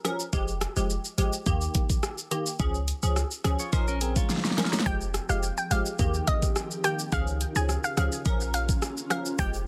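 Dense, heavily limited and nearly dry, this short cut from a longer dancehall track moves at 106 BPM in F minor with a tough, sultry mood. An up-front pop drum kit with a knocking kick, fat snare, rim click, hi-hat and shaker carries overdrive from the start, while a deep, boomy 808-style bass with a sine tone enters at 0.3 seconds beneath crisp, detuned wavetable chord stabs cycling through Fmadd9, Eb, Db and Bbm. A bright, twangy clean electric guitar adds brief arpeggios with subtle chorus and digital delay as a drum fill closes the first half. At 4.9 seconds a round, detuned analog pluck takes the melody, coloured by chorus, delay and a moving notch, and moments later an ethereal, airy pad with phaser, ensemble chorus and sidechain pumping settles in the background. A very quiet, close egg shaker rings out in the final moments.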